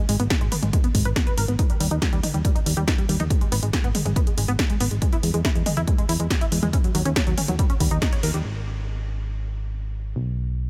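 A straight 4/4 pulse at 140 BPM drives this driving, bittersweet uplifting trance passage in G# minor, anchored by a heavy, layered electronic kick set up front with a large-room sound and an overdriven analog drum machine supplying hi-hat, punchy snare and toms. A tight, detuned sawtooth-and-triangle synth plays sequenced arpeggios with a plucky filter, colored by chorus, phaser, delay and sidechain pumping, while a round, dark FM bass pumps beneath it through a G#m, D#, E, D#m7 and D#7 progression. The kick drops out at 8.1 seconds, and after a band accent at 8.0 seconds, the synth and drum machine drop out at 8.4 seconds, leaving the bass alone in a digital ambience until 10.7 seconds.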